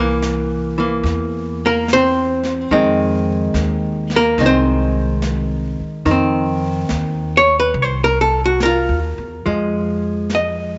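Intimate and smoky, this slow swung jazz ballad excerpt at 72 BPM features a dark, clean, up-front hollow-body archtop guitar picking its compressed accompaniment through C7, Fm7 and F5 chords, supported by a woody pizzicato upright bass and a soft brushed kit that enters at 0.2 seconds with snare and hi-hat, all bathed in moderate spring reverb with a mellow top end.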